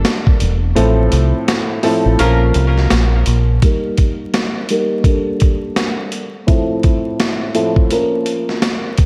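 A deep, round fingered electric bass sits up front in this nostalgic, soulful boom-bap hip-hop fragment, riding over a gritty, swung sampler-style kit of thumpy kick, high-tuned snare and hi-hat, whose kick is muted from 0.8 to 3.6 s, while a woody, mellow upright piano with audible action noise and a cassette-tape tint plays throughout. A tight horn section adds one brief, punchy, vibrato-laced octave stab with delay at 2.2 s, and at 3.6 s the bass stops as a filter sweep begins on the piano, all steeped in a dreamy church-like reverb and vinyl crackle.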